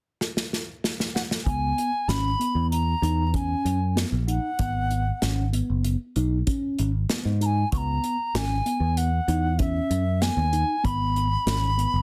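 Set in a straight 5/4, this tense, intricate progressive instrumental opens with a drum fill on an acoustic kit played with bundle sticks, its snare carrying soft clipping, before a pure, reedy wooden flute with vibrato enters at 1.1 seconds and, from 1.5 seconds, a growly picked electric bass and a mellow tine electric piano playing phased arpeggios join over C#m7 and G#m7 chords, all under light reverb and a dense, heavily limited master.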